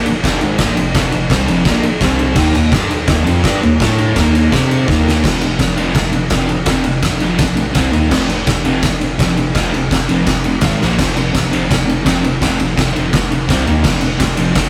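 A double-tracked fuzz guitar leads this rowdy, swaggering garage rock piece for a duo or trio, hammering out a picked, distorted riff in straight 4/4 at 168 BPM over power chords centred on F, moving through C, Eb, A, Ab and Bb. An oversized, low-tuned acoustic drum kit sits up front at the same level as the guitar, its punchy kick, fat snare and dark crash and ride cymbals sounding saturated and gritty in a pumping, bright stone room. Beneath them, a soft dub sub bass adds a deep, round, sustained low end with a fast attack and overdrive, mixed lower than the other two parts. The drums mark the move into the second section with a fill from 4.9 to 5.2 seconds and throw in another at 10.8 seconds. The whole cut carries the rough feel of a rehearsal-room recording, with warm saturation and a moderate stone-room reverb, and it is lifted from a longer piece.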